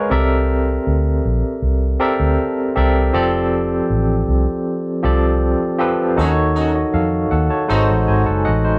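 A barky tine electric piano, clean through a combo amp with medium tremolo and sitting up front, carries the accompaniment in this short, cinematic and silky soul excerpt at 79 BPM, moving through C13, F69, D#m7b5 and G#7b9 before adding its own fill at 7.7 seconds. A dark, round, foam-muted fingered electric bass sits up front beside it, while a very quiet vibraphone with soft mallets adds a metallic, ringing shimmer with slow motor vibrato at the start and close. From 6.2 seconds a loose, jazz-style horn section with octave doubling and light vibrato plays stabs for a band accent, all captured live in one room with moderate studio ambience.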